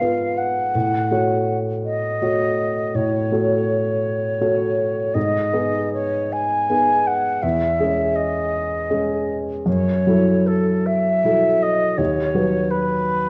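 A mellow concert flute carries the melody from A4 to G#5 with an airy, straight tone and soft attack, sounding both distant and up front in this serene, tender classical piece for flute and grand piano. The grand piano accompanies from D#2 to C#5, intimate and natural, with its action noise audible close up. The music moves slowly at 54 BPM in dotted quarters in 12/8, with a rubato feel that lets the phrases breathe. The harmony passes from Fdim/Ab through F#m/A, G#m at 5.2 seconds and C#m/E, then F#m7, arriving on B/D# at 12.0 seconds. A wet recital hall reverb surrounds the duo, and worn, warbling cassette tape adds a warbly pitch drift, giving this 13.3-second fragment of a longer piece an aged, worn cast.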